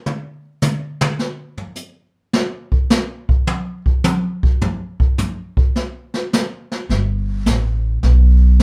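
A swung eighth-note feel at 106 BPM in 4/4 drives this short swinging, sophisticated jazz cut in G major, taken from a longer piece. The brushed drum kit opens with a solo that runs to 6.9 seconds, moving between brushed snare, hi-hat, toms and a boomy kick in a roomy studio sound with a rolled-off top end. At 6.9 seconds a pizzicato upright bass enters, sitting low between G1 and B1 with a woody, steel-strung tone placed up front. The two play together until the cut ends at 8.6 seconds. A moderate studio reverb gives the live band a sense of sharing one room.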